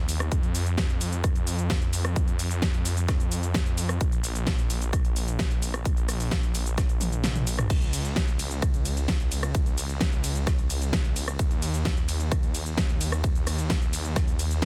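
A straight 4/4 pulse at 130 BPM drives this anthemic, euphoric slice of festival progressive house, cut from a longer piece. A thick, detuned sawtooth bass sits up front from 0.0 s, moving between Bb1 and F2 with a fast attack, a saturated, sustained tone, sidechain pumping and a menacing, beating edge. Moments later a big-room dance drum kit enters, built around a huge snare with cabasa, hi-hat, rim click, ride and crash cymbals, and toms, and a punchy, layered electronic kick follows just after, sitting up front. A drum fill runs from 7.0 to 7.7 s, and the kick briefly drops out inside it. The sound is dry and dense, pressed into a heavily limited modern master.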